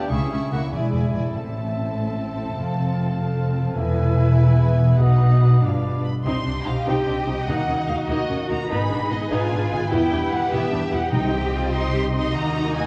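A swashbuckling, determined stretch of heroic adventure film score in 6/8 opens with an expressive violin section carrying the melody over a lush second violin line, focused violas and mellow, ringing harp arpeggios, while clear trumpet stabs cut through until 6.0 s and woody double basses and smooth-topped cellos hold the bass beneath. Distant, roomy French horns add sustained chords from 1.3 s, timpani on calf heads sound briefly in the background, and the harmony shifts to a new key centre at 6.3 s. The recording sits in a moderate concert hall reverb with a worn, warbling old-tape character and drifting pitch.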